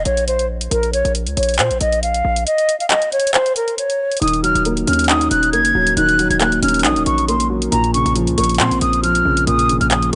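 A half-time trap groove of handclaps and bright hi-hats from an electronic kit sits under a punchy, heavy 808 bass with a noisy edge, and the kick drops out between 2.5 and 4.2 seconds, giving this brief, menacing hip hop fragment a gritty, dry character. Up front, an airy, hollow concert flute carries the melody with vibrato and tongued notes, trailed by tape echo. At 4.2 seconds a dark, boxy grand piano enters with audible action noise and deep low notes, moving from Ebm7 to Bbmadd9 beneath the flute.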